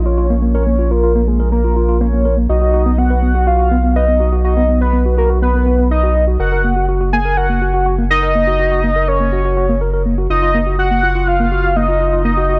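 Opening together, a velvety, detuned synth lead carrying the melody through chorus, tremolo and tape echo and a round, deep analog bass sitting up front set an eerie, melancholic IDM mood over a straight 4/4 pulse, joined at 0.1 s by a mellow tine electric piano playing echoing arpeggios through built-in speakers as the chords move from Bbm through B and Gb to Ebmadd9/Gb in a dry room, all cut from a longer piece.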